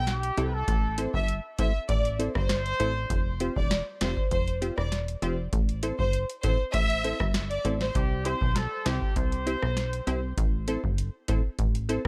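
Dancehall at 99 BPM in 4/4, a sunny, summery clip cut from a longer piece, rides on a booming analog drum machine with deep kick, crisp snare and metallic hats pushed into overdrive, plus a punchy, funky analog bass that plucks through the full 12.1 seconds. A crisp, detuned wavetable chord stab moves through C, Am, Fsus2 and back, while a focused, close studio violin section carries the melody with vibrato and tape echo until 7.9 s. A distant, roomy horn section adds a second line, also with tape echo, in two brief passages, the later one arriving at 8.0 s, and the whole recording has a dry, gritty hardware sound with little reverb.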